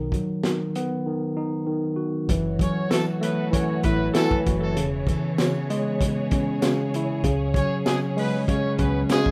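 Dark and moody, this boom-bap hip-hop excerpt rolls along at 97 BPM in F# dorian with a light swing on the sixteenths. A worn, slightly out-of-tune tine electric piano sits up front from the start, filtered at both ends, over a round, deep dub fingered bass that stays in the background. The crunchy breakbeat kit brings a punchy kick, a medium-tuned snare and hi-hat with a saturated, gritty grain and a rolled-off top, then drops out from 1.1 to 2.3 seconds. At 2.3 seconds the second section opens with lush, woody bowed strings holding sustained chords through F#m7, E6 and C#sus4, and a loose, jazz-style horn section soon adds filtered stabs with light vibrato and delay. A very quiet, jingly tambourine joins at 2.9 seconds, and the whole sits in a moderate studio reverb with a rough home-demo finish.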